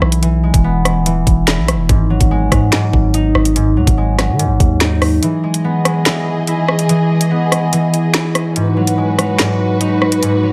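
Cold and menacing, this drill cut from a longer piece moves at 144 BPM in a half-time feel in G# minor, with an up-front fingerpicked concert harp ringing over a deep, sine-toned 808-style bass and an overdriven electronic drum kit of knocking kick, woody snare, bright hats, rim clicks and finger snaps. At 5.2 seconds the bass and kick drop out as a dark, lush bowed string section enters with vibrato-rich sustained chords, moving from Emaj7 to G#m7 alongside the harp in a reverberant studio space.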